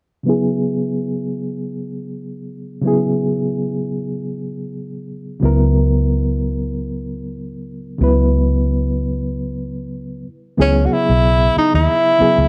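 A lightly swung sixteenth-note groove at 93 BPM in 4/4 carries this late-night, soulful neo-soul R&B excerpt in C# dorian, opening on a reedy electric piano with fast tremolo that holds a C#m7 chord under a filter sweep from 0.3 seconds. A round, foam-muted vintage electric bass joins up front at 5.4 seconds, and after a brief break in the harmony the chord shifts to C#m11 at 10.6 seconds. There a breathy tenor saxophone takes a mellow, subtoned jazz solo with vibrato and scooped notes, set in a moderate plate reverb within a dark production.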